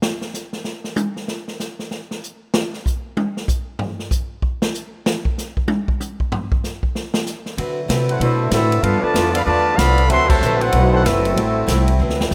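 Close, detailed microphones and light reverb frame this joyful, swinging big-band jazz excerpt at 191 BPM, which opens with a drum solo on an up-front kit with a punchy kick. At 7.6 seconds the band enters in D major: a growly, woody upright bass, a boxy picked archtop guitar in the background, and very quiet nasal muted trombones holding sustained chords. Just after, a smooth-topped trumpet section carries the melody over a mellow, lightly vibrato trombone section playing a second line, with a band accent at 10.3 seconds and a drum fill from 12.0 seconds closing the excerpt.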